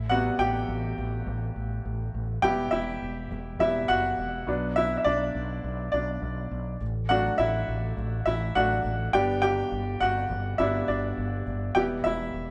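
A bright, woody upright piano takes the lead from the opening, its intimate, up-front sound carrying audible action noise and a short sustain as it solos over chords moving from Am7 through Em, Bm, D/A and G. This hopeful, anthemic piano-driven pop moves at 103 BPM in a straight 4/4, tuned to A4 = 438 Hz, with a dark, round fretless electric bass sitting direct and amped beneath it for the full 12.5 seconds. The pair sounds like a band playing live in one room, wrapped in a moderate stone-room reverb, in this short section cut from a longer piece.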